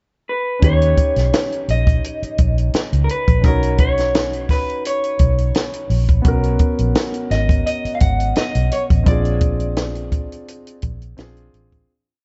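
A smooth, romantic 1970s-style soul piece at 85 BPM with a gently swung 16th-note feel, where a compact cocktail drum kit's dry, punchy kick and high-tuned snare carry a mid-tempo groove under a foam-muted, round fingered bass line full of ghost notes and chromatic approaches, a concert grand piano holds intimate rootless chords with audible action noise, and a slightly broken-up, lo-fi electric guitar through a small old amp picks call-phrase motifs with tape echo, all in a dark, lightly reverberant production that fades out from 9.1 seconds.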